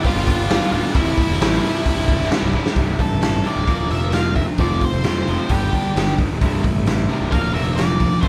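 Quiet-loud alternative rock with a restless, cathartic edge, this excerpt from a longer piece moves at 132 BPM in a straight 4/4, centered on C major with a slightly flat tuning. A gritty, saturated garage drum kit sits up front with a punchy kick, a medium-tuned snare and hi-hat, its rolled-off top ringing in a stone-room ambience. Beneath it an overdriven, fuzz-laden picked bass anchors the low end, while a very quiet, thick fuzz guitar plays the riff alongside a bright, tight distorted guitar in the background. A drum fill at 2.5 seconds opens the second section at 2.8 seconds, where a clean picked electric guitar adds arpeggios behind a dark, octave-fuzz lead solo. The band sounds as if it is playing live in one large studio room, with moderate reverb gluing the parts together over chords that cycle through G, C6, Bb/D and F.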